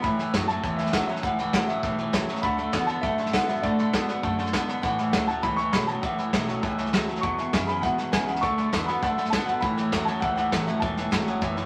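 A vintage brush kit drives a straight 4/4 at 200 BPM, with a punchy kick, a medium-tuned snare and hi-hat sitting up front with a rolled-off top, giving this rollicking, upbeat rockabilly excerpt in A major its push. A twangy electric guitar at the edge of break-up plays a compressed, picked low riff up front, while a woody, thumpy upright bass on gut strings is plucked in the background. The melody comes from a boxy upright piano with long sustain and audible action noise, carried high in its register for about 11.7 seconds. Behind it, a metallic, jangly tack piano and a full-bodied, picked dreadnought steel-string guitar with finger squeak fill out the accompaniment. The harmony moves through A6, D6 and E6 chords, with a wet studio reverb and a layer of vinyl crackle lending the whole clip a vintage character.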